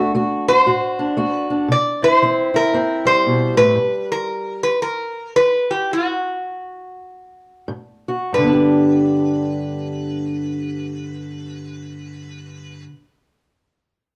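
Swung eighths in 4/4 at 89-116 BPM carry this soulful, laid-back acoustic country blues in G major, where a boxy, parlour-style fingerpicked steel-string guitar supplies accompaniment beneath a nasal, metallic resonator slide guitar that carries the melody with fingerpicks and plate reverb, both up front in a dark studio sound, as the tempo slows and the music halts at 3.8 seconds, resumes near 7.7 seconds and arrives on G at 8.3 seconds in this fragment of a longer piece.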